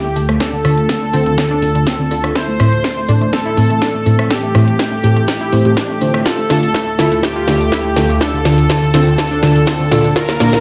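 A straight 4/4 pulse at 123 BPM drives this short, emotional and dreamy progressive house cut in D minor, built as a continuous build-up with a drum fill running throughout, moving from Dm to Am at 2.4 seconds and back to Dm at 6.3 seconds. The house drum kit enters at 0.2 seconds with hi-hat, rim click, shaker and a cracking, tape-warm snare that sounds re-recorded in a large room, its percussion and hats pumping against the sidechain, while a punchy electronic kick sits very quiet beneath from 0.4 seconds. The loudest part is a deep, mellow chord stab with lush chorus and a filter sweep across its length, joined by a detuned unison pluck whose lush sawtooth arpeggios carry cassette tape colour and delay. Above them, a smooth, detuned supersaw with a sub octave sings a melody between G4 and C5 through delay, and an evolving, morphing wavetable pad holds slow-attack chords with chorus and its own reverb. 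Every synth breathes with sidechain pumping, and the whole mix sits in a wet digital room with a dark production sound.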